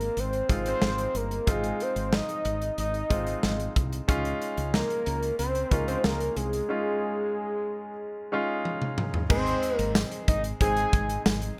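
Lightly reverberant, this short excerpt of romantic, nostalgic 1980s-style pop carries its melody on a fat, nasal analog lead with vibrato and delay, sitting up front over a clear, polished baby grand piano and a woody, round fretless electric bass. An acoustic studio drum kit with a tight kick, medium-tuned snare, hi-hat, tambourine, crash and toms keeps a straight pulse and plays a fill from 8.7 to 9.3 seconds. That fill leads into a new section, where the harmony settles back on its home chord.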